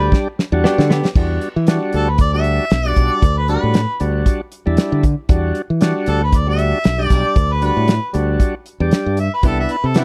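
A warm, overdriven harmonica carries the melody in this mournful, soulful cut from a longer straight-eighth soul blues, its jazz-style solo lines shaded with light vibrato and scooped pitches that sit up front yet carry a distant, roomy air. Beneath it, a thick, gritty tonewheel organ holds the accompaniment through a slow rotary speaker, with key click audible in its full tone. A punchy fingered electric bass, recorded direct, anchors the low end up front, while a dry, damped 70s drum kit joins at 0.1 seconds with a fill, its fat snare, tight kick and dark, rolled-off cymbals close at hand. A clean, compressed electric guitar, picked and recorded direct, adds brief stabs with tape echo from the background at 0.6 seconds and again at 9.4 seconds, where the harmony moves from Em7 to Cmaj7. The whole piece has the intimate feel of a small-room 1970s studio recording.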